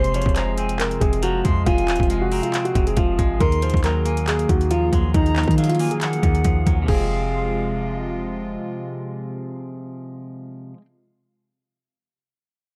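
Trap hip hop at 138 BPM in a half-time 4/4 feel, this menacing clip in F phrygian moves from Fm to Ebmadd9 and back. A mellow grand piano with long sustain carries the melody while an airy concert flute with vibrato and delay traces a higher second line, over twangy fingered electric guitar, a hollow chorused pad in the background and a deep, boomy sine 808 bass. Up-front trap drums with a hard-clipped kick, metallic hi-hats, handclaps and crash cymbal drop out at 7.0 seconds. The piano and flute stop at 8.1 seconds, and the bass follows at 8.6 seconds, leaving the guitar and pad to ring on through dark, warm digital ambience.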